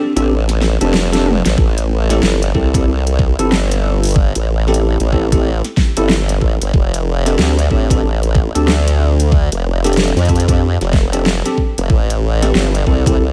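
Swaggering and funky, this glitch hop excerpt rides a swung 16th-note groove in 4/4. A bell-like, bright tine electric piano plays stabs from the very start, dressed in lush chorus, delay and sidechain pumping. A formant-sweep wobble bass enters at 0.2 s, saturated and up front, its sawtooth and sine tones wobbling through a formant filter with a fast attack and compressed sustain. The dubstep drum kit arrives at 0.2 s too, with hi-hat, toms and a huge overdriven snare, closing a short opening break with a fill before a knocking, overdriven electronic kick joins at 1.6 s. The harmony moves between F6 and Am7 under a film of vinyl crackle and light reverb, with the drums set in a small room.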